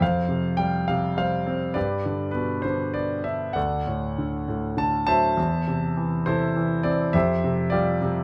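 Classical solo piano in a lyrical, relaxed and sunny mood, moving at 102 BPM in 3/4 with a rubato feel in G major. A concert grand plays alone for the full 8.2 seconds, ranging from D2 to A5, its tone clear and polished with deep bass and audible action noise, captured up front and intimate by close, detailed microphones in light reverb. The harmony passes through Fsus2, G, D and Am/E before returning to Fsus2, and the passage is cut from a longer piece.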